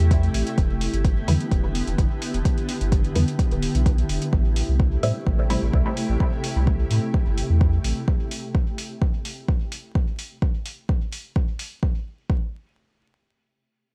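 Wrapped in vinyl crackle, this hazy, deep dub techno excerpt sets a tape-warm, up-front kick and metallic hi-hats under a round sine sub bass and a blurred, evolving granular pad that pump with the sidechain, while a muted, detuned sawtooth chord stab, carrying 12-bit sampler grit, phaser and dub echo, appears between 1.3 and 5.6 seconds before the pad and bass fall away near 8 seconds, leaving the drums to carry on amid the crackle.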